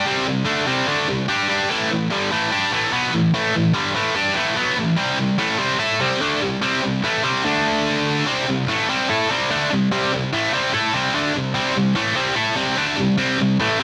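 In a straight 4/4 at 146 BPM, this dark, epic metal passage, cut from a longer piece and tuned to A4 = 441 Hz, features a single heavy high-gain electric guitar, bright, distorted, picked and double-tracked, sitting up front in a dry space as it ranges from G2 to A4, shifting from a C5 to an A5 power chord at 1.7 seconds and then moving through C5, D5 and back to C5 until it stops at 13.8 seconds.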